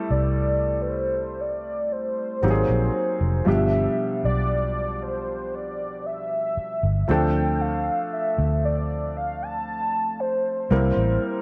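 A velvety, detuned synth lead carries the melody up front, its mellow sawtooth tone thickened by chorus, vibrato and tape echo, in this slow, longing and sensual contemporary R&B passage at 58 BPM, cut from a longer piece. An intimate concert grand piano with audible action noise and deep lows plays the accompaniment, while a dark, round, foam-muted fingered electric bass comes in at 0.1 s and sits prominently underneath. The chords move from Am7 through G#9 and G7 to Dm7 and C7, framed by a moderate spring reverb, small room ambience and the worn, warbling pitch drift of old cassette tape.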